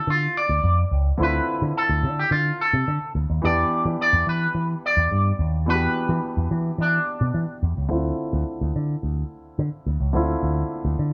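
This short disco excerpt opens with a bright, twangy electric guitar carrying the melody through an envelope filter, set over a grand piano playing low-pass-filtered accompaniment, with a picked electric bass joining at 0.1 s. Moving at 107 BPM in a straight 4/4 and in D dorian, the groove feels danceable and driving, with chords shifting from Dm9 to Em7 and back to Dm9. The bass also runs through an envelope filter, sitting punchy and amped up front alongside the clean, picked guitar, while the piano stays softer and warm in the background. The guitar drops out at 7.6 s, and from 7.9 s a filter sweep on the piano colours the closing stretch as the bass continues to the end. The band sounds like it is playing live together in one room, wrapped in a moderate studio reverb.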